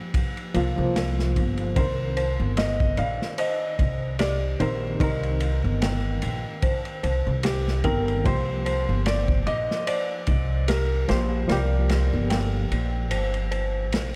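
Trip hop at 74 BPM in 4/4 with a lightly swung sixteenth feel in C minor, this cinematic, hypnotic excerpt is cut from a longer piece and moves from Gm7 to Cm7 and back to Gm7 at 8.2 seconds. A crunchy breakbeat kit sits up front with a punchy kick, medium-tuned snare and dark ride cymbal, its saturated, gritty sound rolled off at the top, while a pizzicato upright bass with steel strings adds a woody low end. A reedy electric piano, clean and heard through its built-in speakers, carries the accompaniment with tremolo and tape echo. From 1.8 seconds a felt-muted upright piano plays the melody, soft and intimate with audible action noise and a touch of tape echo, and from 2.2 seconds an eerie, inharmonic FM synth bell adds detuned arpeggios shimmering with chorus and delay. Light reverb and a small room ambience frame the parts, and the kick drops out for the final second before 14.2 seconds.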